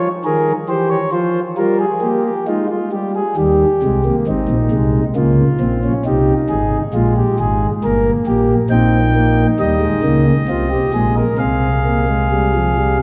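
A chamber organ on its principal stop carries this solemn, driving baroque-style four-part fugue alone, its smooth, up-front voicing marked by a crisp chiff at the start of each note and spanning deep bass to high treble. Set in triple time and cut from a longer piece, the counterpoint moves through a minor-leaning opening before settling into a major key from 8.7 seconds. The sound blooms into a long, wet church reverb that lingers for several seconds.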